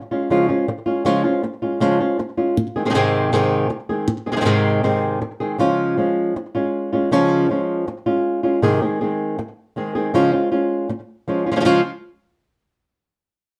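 Festive and fiery, this flamenco snippet features a solo flamenco guitar, thumb-plucked and up front with an acoustic, warm tone and a slapback echo, playing from 0.1 to 11.8 seconds over a straight 4/4 feel that moves between Db and Ab chords, all set in a dark production with moderate studio reverb.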